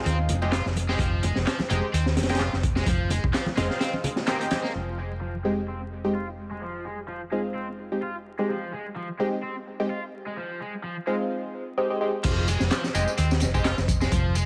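A nasal, detuned sawtooth chord stab with chorus, phaser, tape wear and dub echo opens this energetic, raw breakbeat excerpt in F minor at 128 BPM with a swung feel, joined at once by a double-tracked overdriven guitar riff, a round, hollow-body electric bass up front, and a gritty, punchy breakbeat kit with congas, bongos, handclaps and tambourine; the drums and percussion drop away at 4.7 seconds, leaving stabs, guitar and bass over vinyl crackle, before the kit, claps and tambourine return for the drop at 12.2 seconds.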